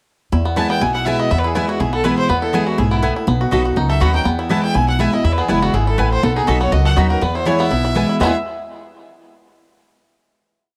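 A rustic, lively bluegrass piece in E major opens at 0.3 seconds with upright bass, picked steel-string acoustic guitar and bluegrass banjo starting together at a racing 244 BPM in 4/4, the eighths lightly swung. The bass sits up front with a thumpy, woody pizzicato tone, playing a two-beat root-and-fifth line with walk-ups, while the dreadnought guitar, bright with fresh strings and a hint of finger squeak, alternates bass notes and strums with bass runs. The twangy banjo, played with fingerpicks, spins percussive three-finger rolls through a tape echo. At 0.6 seconds a clear, nasal fiddle enters with a bowed tune in running eighth notes, earthy and lightly vibratoed, alongside a mandolin whose double strings chop on the off-beats. The harmony moves simply between E and B, and the dry, close sound of a small 1970s-style studio room carries the single passage to a final chord ringing out from 8.2 seconds.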